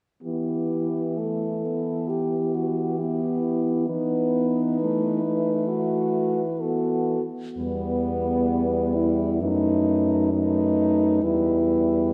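An up-front mellow French horn carries the second line with light vibrato and a smooth top, while another horn sings the melody above it with a soft attack and close-miked intimacy. A third horn fills in the accompaniment, and a dark horn anchors the bass with its own gentle vibrato, all four sounding together from 0.2 to 12.1 seconds in a solemn, elegiac E minor passage cut from a longer classical piece. At a rubato 65 BPM in 4/4, the harmony rests on E minor before moving to B7 over F# at 9.4 seconds and resolving home, all bathed in the long wet bloom of a church reverb.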